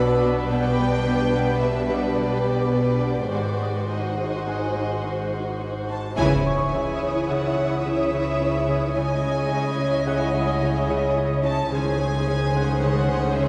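Ominous and tense, this cinematic cue moves at 108 BPM in an uneasy 5/4, cut from a longer piece and settling into C# harmonic minor at 6.2 s. Two violin sections carry a melody and a second line with a soft, floating sul tasto tone, while a dark, intimate viola section sits in the background with light vibrato. Low strings anchor the bass: a close double bass section with a smooth top and a distant, pure cello section bowed softly beneath. A Celtic harp plays a ringing fingerpicked riff in the low register, a concert harp adds background texture up high, and a grainy, flickering granular pad with detuned tones and its own built-in reverb holds sustained chords throughout. At 6.2 s the harmony shifts from a Bm and G#7 passage to C#madd9 as a huge, bright impact strikes with a band accent and rings until 9.0 s. The whole ensemble sits in a wet scoring-stage reverb that lends it a spacious, shadowy depth.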